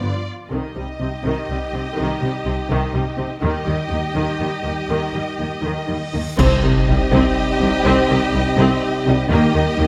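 Rolling in a straight 6/8 at 82 BPM counted in dotted quarters, this epic orchestral film-score passage in C minor feels relentless and heroic, moving from a G7 pickup into C minor and E-flat harmonies. A close, lush violin section carries the high melody with expressive vibrato, shadowed by a darker, more distant second violin line, while violas with vibrato and portamento fill the accompaniment. Dark horns hold sustained chords in the background, and cellos and a smooth, even double bass section anchor the bass in a moderate scoring-stage reverb. A huge, bright reverse cymbal rises quietly from 6.1 seconds into an impact, and at 6.4 seconds the orchestra hits a band accent, with dark clash cymbals, concert bass drum and round, soft-mallet timpani striking alongside. From that moment a clear trombone section joins the sustained chords and a mellow, very quiet tuba doubles the bass line, broadening the low brass through to the end of the cut at 9.9 seconds.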